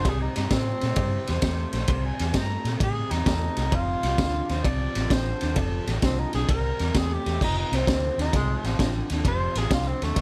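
A swaggering, soulful electric blues shuffle in F at 130 BPM opens with a distant, roomy tenor saxophone singing a jazz-style melody full of vibrato and scooped notes, over a slightly broken-up, lo-fi guitar riff bathed in lush chorus, a gritty, saturated garage drum kit with a punchy kick and high-tuned snare, and a dark, round, foam-muted bass. From 1.3 to 5.9 seconds an amplified, overdriven harmonica adds a second line with tongue slaps and light vibrato, while the chords move from C through F and C7. At 7.4 seconds the saxophone takes a solo as the harmony returns to F, in a dry mix cut from a longer piece.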